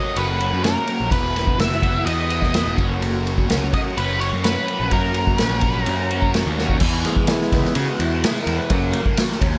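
Psychedelic rock at 126 BPM in E lydian with a kaleidoscopic, trippy mood: a dark octave-fuzz lead guitar with slapback echo sings its melody until 6.3 seconds over a bright, double-tracked overdriven guitar riff through phaser, a fuzzy picked bass, and an up-front vintage kit with a punchy kick and dark cymbals in a small pumping room, while a reedy, very quiet tonewheel organ with key click and slow rotary holds chords before taking a solo at 6.8 seconds, just after a drum fill at 6.6 seconds, in this short cut from a longer piece.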